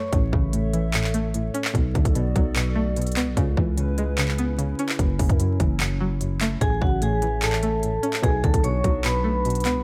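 Melancholic yet hard-hitting, this short half-time trap and hip hop cut rides a looping progression of A, Bm7, C#m7 and F#m7 under a steady haze of vinyl crackle. A trap drum kit sits up front from 0.1 seconds, its hard-clipped kick, crisp hi-hats and handclaps punching through, while a growling, buzzy 808-style bass with a fast attack and decaying tail anchors the low end. A twangy, full-bodied, string-like resonator pluck carries the accompaniment throughout, its sawtooth tone laced with a noise layer, a filter sweep and chorus. Beneath it, a warbling, nostalgic lo-fi pad of square and triangle waves holds dark sustained chords with a slow attack, long release, chorus and its own reverb, sitting lower in the mix. A metallic, ringing vibraphone struck with medium hard mallets and colored by motor vibrato and tape echo takes the melody up front at 6.6 seconds.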